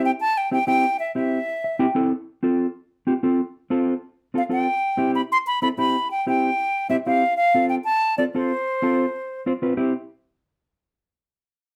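Danceable and joyful, this short Latin excerpt pairs a breathy, close-miked silver concert flute carrying an expressive, tongued melody with a dark, fingered electric guitar accompanying until just before the close, both placed up front. The flute drops out at 1.9 seconds, partway through a clean guitar fill that runs from 1.5 to 2.1 seconds, and returns at 4.4 seconds as the harmony moves between C and F. A moderate studio reverb lends the sound some air.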